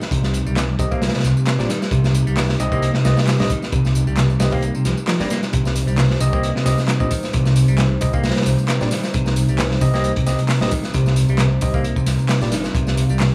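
A gritty, energetic breakbeat groove at 133 BPM in C minor swings lightly under a crunchy, saturated acoustic kit with a tight kick, layered with an overdriven electronic house kit of handclaps, tambourine and bright hats, while a rumbling detuned saw bass and a clean, compressed electric guitar riff with 12-bit sampler grit and tape echo drive forward, barky overdriven tine electric piano stabs with tape echo arrive at 0.8 seconds, a moody analog pad sits in the background with lush chorus and sidechain pumping, and a brief break lands at 4.6 seconds in this small-room excerpt from a longer piece.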